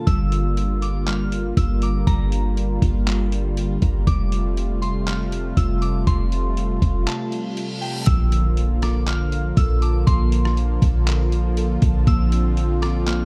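Atmospheric cloud-rap with a blissful, dreamy half-time feel, built on a warm, detuned sawtooth pad pumping against the beat, a pure, warbling FM bell melody with chorus and analog delay, airy glassy keys arpeggiating in the background, a deep, boomy 808-style sine bass up front, and gritty, pitched-down sampler drums with a thumpy kick, handclaps, hi-hat and rim click, all sitting dry until a break near 7.1 s brings a reverse cymbal and an electronic impact at 8.1 s as the chords settle onto Bbmaj7.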